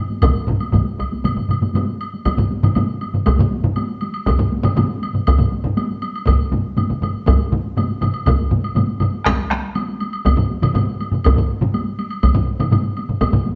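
Driving, straight four-beat rhythm that keeps speeding up. This powerful Japanese traditional taiko drum ensemble piece is cut from a longer performance, with four taiko parts, three struck with hard sticks and one with heavy sticks sitting up front, close and dry. Another sits close and dry in the background, and one carries the live room, alongside a woody, vintage-sounding woodblock with a band-limited tone. Played live together in a stone room with a wet reverb, the drums enter almost at once and run to around 13.4 seconds, shifting into a new section at 2.3 seconds.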